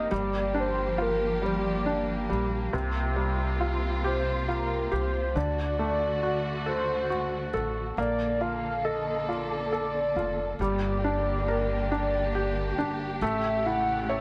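Aching and melancholic, this slow G minor pop excerpt in 6/8 at 46 BPM sets a velvety, detuned synth lead with chorus carrying the melody over an intimate felt-muted upright piano with audible action noise, expressive bowed strings sustaining chords with vibrato and portamento, and a woody, thumpy pizzicato upright bass, all in a small room with light reverb, shifting at 8.0 s from Gm7, C7sus4 and D to Bbmaj7, Gm and A7.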